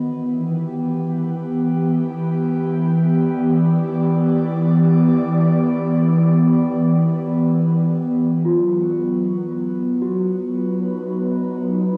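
An airy, breathy analog synth pad fades in over the first 8.5 seconds, holding detuned sustained chords from G6 to B with chorus and a slow attack, and a delicate, bell-like celesta joins at 8.4 seconds with sweet arpeggios carrying tape echo, all set in a wet studio reverb with cassette tape coloring this weightless, serene ambient fragment of a longer piece.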